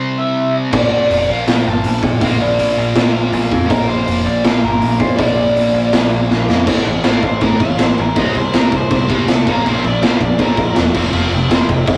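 Straight 4/4 half-time punk rock opens this rebellious, upbeat cut with a sludgy, double-tracked distorted guitar riff up front and an overdriven semi-hollow guitar carrying the melody, joined at 0.7 seconds by a bright picked electric bass and a muffled, lo-fi garage drum kit with a punchy kick and gritty saturation, until a drum fill at 6.3 seconds launches an overdriven electric guitar solo at 6.7 seconds over light reverb and a rough rehearsal-room sound.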